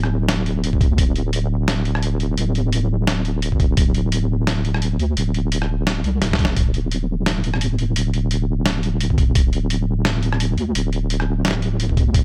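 A half-time groove at 172 BPM in 4/4 drives this dark, tense drum and bass excerpt, its 16ths carrying a light swing. An up-front sampler-style kit supplies hi-hat, rim click and a medium-tuned snare, all pitched down, compressed and gritty with a tape-like grain, as if re-recorded in a small room. A thumpy electronic kick, equally gritty and pitched down, lands in sparse hits, first at 0.7 s, with a short drum fill around 6.2 s. Underneath, a deep, soft wobble bass blends square and sine tones between D1 and D2, its sustained, saturated notes thickened by chorus and sitting prominently in the mix. The sound is dry and close, with little reverb.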